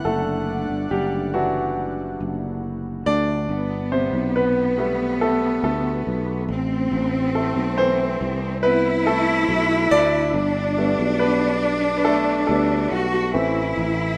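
This tender, heartfelt pop ballad opens on a clear, polished baby grand piano carrying the accompaniment up front, joined at once by an airy, breathy pad with a chorus effect and, from 0.1 seconds, a growly fretless electric bass that sits direct and amped beneath, treated with lush chorus. The pad holds soft, detuned sustained chords with a slow attack and a noise layer, then drops away at 3.5 seconds. At that point a bright studio cello section enters as a second line, bowed with vibrato and an intense ensemble tone, its sound extended by delay. The piano plays through the whole passage as the featured voice, while the harmony moves from Dadd9 to Gadd9 and on to Am before returning to Gadd9 and Am. The mix has the small room ambience and rough character of a home demo, and the passage is cut from a longer piece.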